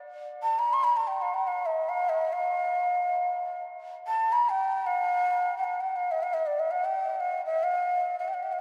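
A vast, echoing space wraps this short passage cut from a longer Arabic maqam piece, its cathedral-like reverb trailing long behind every phrase. A lone ney, up front and breathy, with a mellow, straight tone and rolled-off highs, enters at 0.4 seconds and plays tongued phrases in free time until 8.6 seconds. The mood is stately and passionate.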